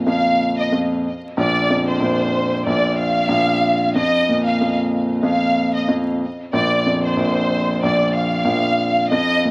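Warm and soulful, this short hip hop excerpt moves at 93 BPM in 4/4 with a gentle swing on the sixteenths, tuned slightly below standard pitch. A dark, mellow baby grand piano sits up front in the low register as accompaniment, filtered at both ends so its tone feels rounded and muted. Above it, a lush studio violin section carries the melody from 0.1 seconds, its bowed ensemble sound rich and focused with vibrato and a smooth top. The harmony shifts among suspended and open chords, from Fsus4 to Bb5, then F7sus4, returning to Bb5 at 6.2 seconds. Light reverb, a small room ambience and a layer of vinyl crackle give the recording a dusty, intimate character.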